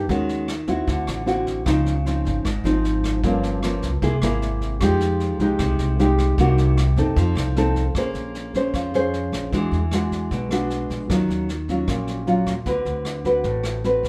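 Wistful and smooth, this short bossa nova fragment in F minor moves at 153 BPM in a straight 4/4, carried by an up-front, thumb-plucked nylon-string guitar with fresh strings and a classical tone voicing rich chords such as Ebm7, Dbmaj9 and Fm9, a woody, thumpy pizzicato upright bass on gut strings, and a vintage brush kit of punchy kick, rim click and medium-tuned snare with a rolled-off top, heard in a moderate studio reverb.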